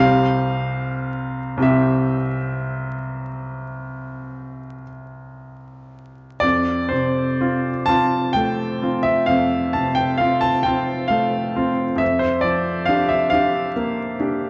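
Dreamy and tender, this romantic classical nocturne for solo piano moves in 12/8 with a free, rubato feel, drawn from a longer piece. The baby grand sits up front with a clear, intimate and natural tone, its action noise audible as it ranges from the low bass to the upper treble over harmony shifting from C to F at 6.4 seconds and on to Gm7/F at 12.0 seconds. A moderate recital-hall reverb surrounds the instrument, while a vinyl crackle lends the recording a nostalgic patina.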